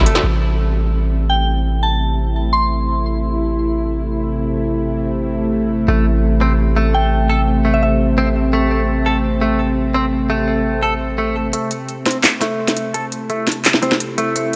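A huge ambient reverb surrounds this dark, spacious half-time drum and bass passage, cut from a longer piece. A tense, string-like drone with a sawtooth edge, a noise layer and vibrato holds sustained chords from the start. Beneath it, a deep, mellow 808-style bass sits up front with long decaying notes. A brief drum fill and band accent open the passage. A soft, pure FM synth bell carries the melody in short phrases, coloured by chorus, phaser and vintage 12-bit sampler grit. At 5.9 seconds, a bright, twangy clean electric guitar, recorded direct, returns with arpeggios treated with lush chorus, a low-pass filter and digital delay. At 11.5 seconds the bass drops out, and an electronic, tape-warm industrial drum kit with a clanging snare, smooth hi-hats and handclaps drives a build-up to the end.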